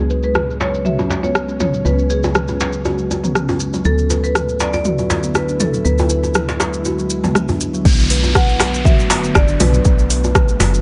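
A mid-forward marimba struck with medium hard mallets carries the melody through this spiritual, hypnotic afro house excerpt, its notes trailed by delay. Beneath it, a plucked kalimba with a fingertip, solid-board ring spins mellow arpeggios with its own delay, while a woody, round FM bass with a fast, decaying attack anchors the low end. An ethereal, detuned pad of unison sawtooth and triangle tones sits in the background with ensemble chorus and built-in reverb, and the pad, bass and kalimba all pump against a sidechain. Grainy, close maracas and a medium-tuned acoustic djembe with metal rattles join an overdriven, layered deep house kit of metallic hats, rim clicks, toms and crash as a filter sweep builds over the opening 7.9 seconds. At 7.9 seconds the drop arrives on a Bm7 chord, bringing in a deep, tape-warm electronic kick up front and a descending electronic downlifter, all within a lightly reverberant, softened mix.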